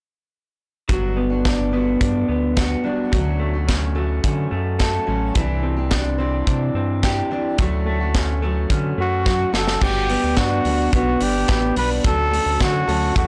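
A straight 4/4 pulse at 108 BPM drives this bright, nostalgic jangly indie pop excerpt, where a polished, airy modern studio drum kit with a high-tuned snare and a tight, softly clipped kick sits up front beside a round, deep analog bass, slightly broken-up arpeggios from an electric guitar through a small old amp colored by plate reverb and tape echo, and a full-bodied fingerpicked steel-string acoustic guitar moving through Gmaj7, Dmaj7 and Cadd9, until a breathy, whispered trumpet with vibrato and scooped notes takes the melody at 9.0 seconds, just before a drum fill at 9.3 seconds leads into the closing section of this blown-out, overdriven recording.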